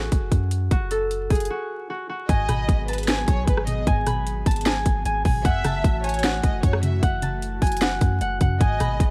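Melancholic and menacing, this half-time trap cut at 152 BPM in G# phrygian opens on a ringing, fingerpicked concert harp melody under a low-pass filter, a deep sine 808 bass, and an up-front trap kit with hard-clipped kick, sharp snare, metallic hats and rim clicks, pausing for a break from 1.5 to 2.3 seconds. At 2.3 seconds the harmony lands on G#m7, later shifting to F#m7 at 5.4 seconds, as a lush, vibrato-rich violin section enters with tape echo alongside a dark, round pluck with chorus sitting in the background, and at 2.8 seconds an airy, breathy pad joins with slow-attack sustained chords. The dry, gritty recording carries vinyl crackle and a digital ambience.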